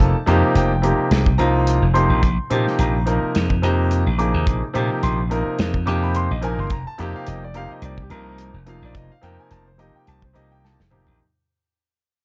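A punchy, amped slap bass sits up front in this slick, soaring electric jazz fusion excerpt at 107 BPM with a light 16th-note swing, joined by a brilliant, polished concert grand piano voicing F9sus4 and Bb13sus4 chords and, from 0.3 seconds, a smooth, dark acoustic drum kit with a tight kick and medium-tuned snare that plays a fill at 10.6 seconds, all within a dark, warm production with light reverb that fades out throughout.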